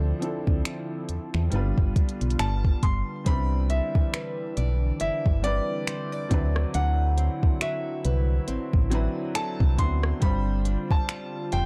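A punchy, round FM bass and an up-front electronic drum kit of soft kick, smooth hi-hat, finger snaps and rim click set a smooth, dreamy contemporary R&B groove with a swung 16th feel, while a clear, worn grand piano and a vintage, chorused analog pad hold the chords from the start, a warm concert grand piano carries the melody from 2.4 seconds, and a woody, boxy picked acoustic guitar with old strings adds arpeggios from 3.3 seconds in this dark production set in a small room.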